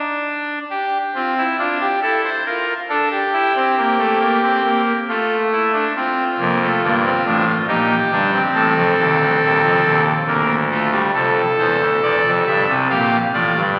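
In a straight 3/4 at 69 BPM, this joyful, lively excerpt from a baroque-style four-part fugue sets a solo pipe organ on its brassy, bright trumpet stop up front, spanning D1 to F5 through harmonies moving from F and Gm7/F to C7 and Bb over 13.8 seconds, bathed in a wet church reverb and the crackle of a very old 78 rpm record.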